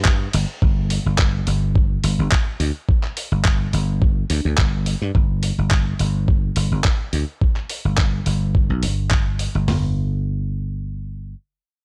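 A slap bass and a dusty, sampler-style drum kit open this groovy, feel-good nu-disco excerpt together, moving at 106 BPM in 4/4 with a light swing on the sixteenths. The thumbed bass sits up front with a bright, growly, punchy tone, foam-muted and played between G1 and G2, with tube saturation adding bite. The drums come in two layers: one carries handclaps, hi-hat and ride cymbal, while the other, louder layer brings hi-hat, a thumpy kick, a medium-tuned snare and toms. Both layers are compressed, overdriven and gritty, and they sit in a studio reverb. The drums stop at 9.8 seconds, and the bass carries on to 11.3 seconds as the piece moves into a new section. The whole recording has a dry, gritty hardware character with a cassette-tape grain and a digital ambience.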